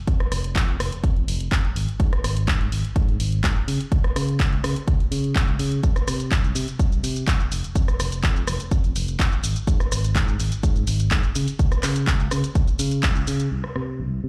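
A punchy, layered electronic kick sits up front in this funky, sensual filtered disco house excerpt at 125 BPM in F minor, with a dark, round fingered electric bass pumping alongside it through a low-pass filter. An analog drum machine adds handclaps, hi-hat, rim click and shaker, its tape-warm hits muffled by low-pass filtering and re-recorded in a large room. The whole band hits an accent at 13.0 seconds, the kick stops at 13.1 seconds, and the bass carries on until 14.3 seconds.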